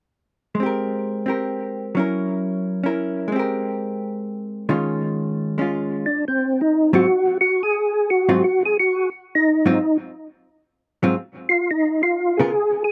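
A percussive tonewheel organ carries the melody in this swinging, greasy jazz excerpt, entering at 6.1 seconds with a mellow, round tone, its third-harmonic percussion giving each note a clean attack. A slow rotary speaker and chorus vibrato add gentle movement to the organ, which sits up front and is the louder of the two parts. A hollow-body electric jazz guitar sets things in motion from 0.5 seconds, comping through the changes with a dark, picked, compressed sound and a slapback echo. The opening section moves through Abmaj9, Gb7 and Eb9sus4 before the harmony settles on Ab6 and later Db13, taking on a mixolydian flavour as the organ enters. The swung eighth notes keep a greasy swing in 4/4, and the recording, made outdoors, carries only a light reverb.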